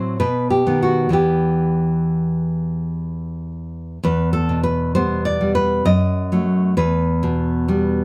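In a flexible, rubato 3/4 time, this passionate, intimate fragment of a longer romantic piece features a solo nylon-string guitar, fingerpicked up front with a bright, full-bodied tone and audible finger squeaks, moving from B to Em and later through D#dim/F# back to Em around 6.8 seconds, all set in light reverb.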